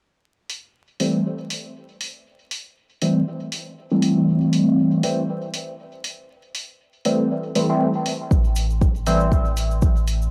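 A resonant, detuned polysynth sweeps its filter through juicy, warbling Am7 stabs drenched in chorus, phaser, dub echo and sidechain pumping, over a tape-warm electronic hi-hat from 0.5 s, in this cavernous, meditative dub techno excerpt at 119 BPM in A minor, where a deep, up-front kick drum, a clean pure sine sub bass and a grainy cabasa in the background arrive together at 8.3 s, the whole piece carrying the sound of a home cassette recording with vinyl crackle and light reverb.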